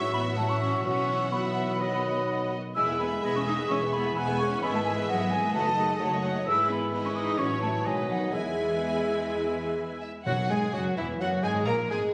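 Graceful and spirited, this quick classical-period movement for symphony orchestra moves in a straight 4/4, cut from a longer piece. A violin section carries the melody from the background with a smooth, vibrato-rich tone. The airy, hollow silver flute sits highest and most present among the second lines, joined by a distant, roomy oboe and a second, rich-toned violin section. Violas and a present solo bassoon fill the accompaniment, mellow French horns hold soft-edged sustained chords behind them, and focused cellos with expressive, portamento-touched double basses anchor the bass. The harmony settles on E before reaching an F#9 at 10.3 seconds, where the timpani strikes briefly with hard mallets on calf heads until 10.9 seconds. A moderate scoring-stage reverb surrounds the ensemble, though the sound was captured on a phone in the room.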